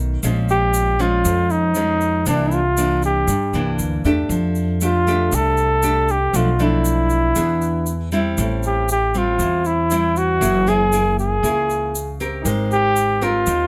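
Bossa nova at 118 BPM, breezy and sunny, in which a mellow, scoop-noted flugelhorn carries the melody up front over fingerpicked nylon-string guitar with a full body and audible finger squeak, woody pizzicato upright bass and a grainy tube shaker, while a clear concert grand piano slips into the background at 12.4 seconds as the chords, having travelled from Bbm7, land on Abmaj9, all caught by close, detailed microphones with little reverb in this excerpt cut from a longer piece.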